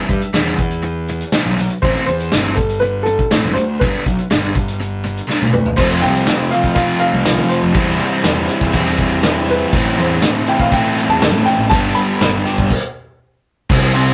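A woody, slightly detuned upright piano carries the melody from the start, its action noise audible and its short notes sitting close and intimate over an indie rock groove at 121 BPM. Beside it, a crunchy overdriven guitar picks an up-front riff while a round, fuzzed electric bass and a loose acoustic drum kit with a punchy kick, medium-tuned snare and dark cymbals fill out the band in a small, natural room. A drum fill at 5.3 seconds leads into a new passage where a second, sludgy distorted guitar joins with its own picked riff, and the harmony moves from Em, Am and G to F, C/E, Am and G. The piano drops out at 12.4 seconds, and the band hits a stop before the cut-off. The mood is jangly and carefree, captured as a rough rehearsal-room take with tube saturation and light reverb.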